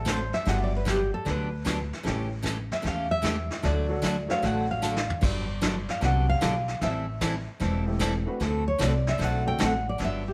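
A fingerpicked nylon-string guitar takes the lead throughout this short cut from a longer western swing tune, its warm, deep classical tone sitting up front as it solos from the first moment. Beneath it, a woody upright bass with gut strings thumps out a pizzicato line that sits just as close, while a bright, full-bodied steel-string dreadnought guitar is picked in accompaniment. A vintage kit played with brushes keeps a swinging groove, with dark cymbals, a punchy kick and a rolled-off top, and it breaks into a brief fill at 4.8 seconds. A clear, slightly detuned upright piano joins at 0.5 seconds, adding long-sustaining accompaniment further back in the mix as the harmony moves through major-seventh, seventh and minor-seventh colors. Light reverb gives the down-home, swinging performance a cozy studio-room feel.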